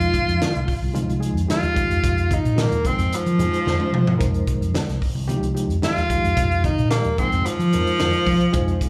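A clear tenor saxophone takes the lead in this slick, intense stretch of electric jazz fusion, its vibrato and scooped notes sounding distant and roomy as slapback and tape echo trail its solo over a single Fm9 chord. Beneath it, a gritty, overdriven reed electric piano shimmers with medium tremolo through a combo amp, while a dark, round hollow-body bass anchors the low end. A crisp drum kit with a high-tuned snare and punchy kick breaks into a fill at 3.7 seconds, very quiet damped congas sit in the background, and the whole band is heard live through a club PA with light reverb.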